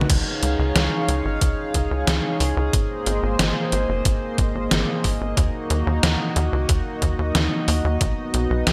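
Uplifting and romantic, this short synthwave excerpt moves at 91 BPM in a straight 4/4 in Db major, cut from a longer piece. A chorused pulse-width pad holds sustained chords up front, its shimmering, retro tone built from pulse and sawtooth waves with ring modulation and a sub octave, slow to rise and long to fade, pumping against the sidechain. Beneath it a tight sequencer bass drives with a punchy, saturated, wave-folded pluck and a moving notch, also pumping with the sidechain. A detuned 8-bit digital drum machine sits up front with a medium-tuned snare, hi-hat, toms and crash cymbal under gated reverb, while an electronic kick drum adds a thumpy, tape-warm pulse from 0.1 to 8.1 seconds. The harmony moves through Dbadd9, Abadd9 and Ebm before landing on Cb at 8.0 seconds, all set in a bright 1980s-style digital production with a moderate plate reverb.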